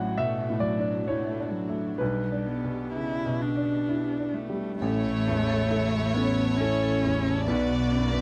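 A dry, close recording with a 1970s studio character and light reverb frames this melancholic, fragile neoclassical piece for piano and strings, which is cut from a longer work and moves in a rubato triple metre. From the start, a clear, woody upright piano sits up front with a vintage tone, playing accompaniment. Alongside it, a single cello carries a second line with vibrato, portamento and expressive, close bowing, while a lush symphonic string section holds sustained chords in the background. At 4.8 seconds the texture thickens: a chamber violin section takes the melody, smooth and even, a lone viola adds focused, distant accompaniment, and a bowed double bass enters up front. A vibraphone struck with hard mallets adds metallic, ringing arpeggios with slow motor vibrato and slapback echo, set back in a boxy small room. The harmony moves from D over A to G over B, then shifts to A at 4.8 seconds and to Bm in the closing seconds.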